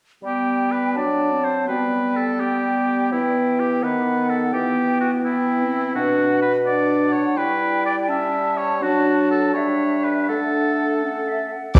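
A warm, up-front oboe with light vibrato shares the second line with a bright, smooth-topped clarinet and a mellow, hollow silver flute with vibrato, over a dark, distant bassoon accompaniment, in this lively, spirited classical-period movement in a quick 6/8 at 84 BPM (dotted quarters), which is cut from a longer piece, opens in G major, turns toward D major at 6.0 s, and is heard from further back in a reverberant recital hall.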